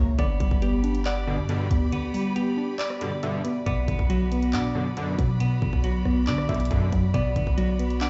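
Eerie and hard-hitting, this short cut from a longer trap piece moves at 138 BPM in a half-time 4/4 feel, centered on B minor and tuned slightly below standard pitch. A warbly, dusty pluck with chorus and a low-pass filter carries the accompaniment, while a soft, round pluck sits in the background as a second line, coloured by chorus and tape echo. A clean electric guitar adds picked arpeggios through lush chorus, filtering and tape echo, and a symphonic string section holds sustained, vibrato-laden chords. A deep, boomy 808-style bass anchors the low end, and a trap kit with a hard-clipped kick, bright hi-hats, handclaps and rim clicks comes in at 0.2 seconds. An edgy sync-sweep polysynth with a nasal bite stabs from 1.3 to 6.9 seconds, with a break from 1.9 to 3.7 seconds before the harmony shifts from G to B minor, all heard through light stone-room reverb with a muffled, dulled top end.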